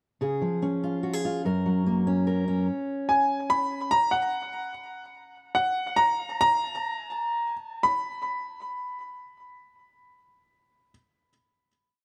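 Warm and hopeful, this short folk piece in 3/4 at 117-146 BPM opens with a fingerpicked steel-string acoustic guitar rolling arpeggios with the woody tone of old strings until 3.9 s, while a bright, polished upright piano with long sustain and digital delay enters at 3.1 s to carry a free, up-front melody that slows from 5.1 s before settling on a final note, framed by a moderate echo-chamber reverb in a dark production.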